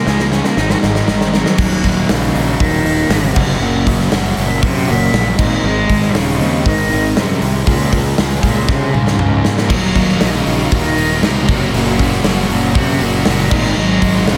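A straight 4/4 pulse at 118 BPM drives this dark, cathartic quiet-loud alternative rock excerpt in Eb dorian, as a big, up-front acoustic drum kit with bright cymbals, a punchy kick and a medium-tuned snare rings through a bright stone room, opening with a fill under a brief cello solo and fill again at 8.7 seconds. A clear, focused bowed cello carries the melody with vibrato over a double-tracked, compressed fuzz guitar riff and a growly, overdriven fingered bass, while the chords move from Db and Ab into a cycle of Ebm, Gb, Ab and Db. At 9.7 seconds a bright, double-tracked cranked stack guitar joins the riff from the background, thickening the roar in this cut from a longer piece.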